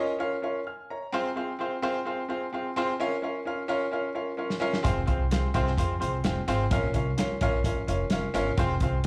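Heard as a live club performance through the venue's PA, this urgent, passionate stretch of uptempo 1960s-style soul opens on an intimate, up-front upright piano with audible action noise and slapback echo; a drum fill at 4.4 seconds brings in a dry, muffled, lo-fi kit of hi-hat, tight kick and snare, and a woody, thumpy pizzicato upright bass joins at 4.8 seconds as the chords move between Bbm and Fm.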